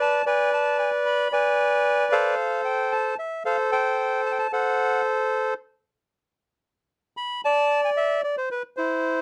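Sultry and melancholic, this brief tango passage, cut from a longer piece, has a lone bandoneon carrying the music in a free, rubato feel over a 4/4 metre. The bandoneon plays solo from 0.0 to 9.2 seconds, ranging from E4 up to B5, and its tone is reedy and bright, placed up front in the mix. The harmony moves from a B diminished seventh to A minor seventh, and from 6.6 seconds the instrument continues with the chords falling away. The tuning sits slightly low, with A4 at 436 Hz. The dry, close 1970s-style studio sound carries only a light touch of reverb, keeping the performance intimate and direct.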